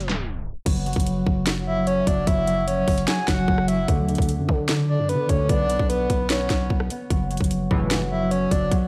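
A trap drum kit sits up front with a hard-clipped kick, a sharp snare, metallic hats, rim clicks and crashes, driving this hard-hitting, eerie half-time hip hop excerpt over a growling, buzzy 808-style bass and mellow, thumb-plucked concert harp arpeggios ringing through tape echo. From 1.7 seconds a breathy, flute-like synth lead with chorus and vibrato carries a second line above the shifting harmony. A glossy, retro chorused polysynth stab lands briefly at 7.7 seconds, all in a dry, gritty hardware recording that opens with a tape stop.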